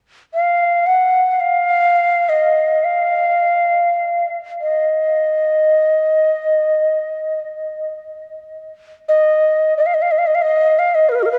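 World meditative music in free time and the Eb hirajoshi scale, this haunting excerpt features a hollow, airy Native American-style cedar flute playing solo from 0.3 to 11.4 seconds between Gb4 and Gb5 with a straight tone and soft attack, set up front within a huge, wet ambient reverb and the worn, warbling pitch drift of old cassette tape.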